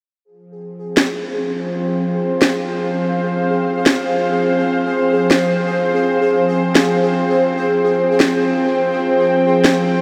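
A pulsing, chorused gated texture enters at 0.6 seconds, and a bright, up-front bowed-like drone with a detuned, ring-modulated edge follows at 0.7 seconds, holding sustained chords in F minor. They are joined by a layered, cracking electronic snare in this tense, heavy half-time drum and bass excerpt in free time, all soaked in a huge, dreamy ambient reverb.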